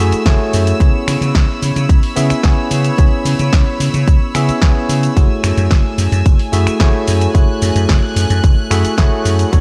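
A punchy electronic kick sits up front in a straight groove alongside a layered house kit of finger snaps, shaker, bright hi-hat and a punchy snare, while a growly, amped slap bass drives underneath with sidechain pumping. Over this sleek, cosmic nu-disco cut, a clean, bell-like tine electric piano provides accompaniment with delay and the same pumping, as a soft-attacked, floating string section holds rich sustained harmony that also breathes with the kick. The brief clip moves between F#m9 and C#m7 before returning to F#m9 at 5.2 seconds, all set in a light reverb.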